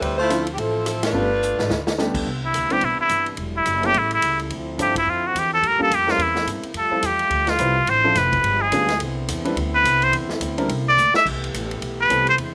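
A swung 4/4 groove from a woody pizzicato upright bass and a big-band drum kit with punchy kick, ride cymbal and rim clicks carries this joyful, energetic big band swing excerpt. A clear saxophone section with vibrato and slapback echo states the opening melody, punctuated by a band accent at 1.0 seconds and a drum fill from 1.4 seconds, before a nasal, straight-muted trumpet solo with scooped notes takes over at 2.5 seconds. Intimate baby grand piano accompaniment, with audible action noise, and sustained warm trombone section harmonies fill in beneath the up-front horns in a dry, outdoor sound.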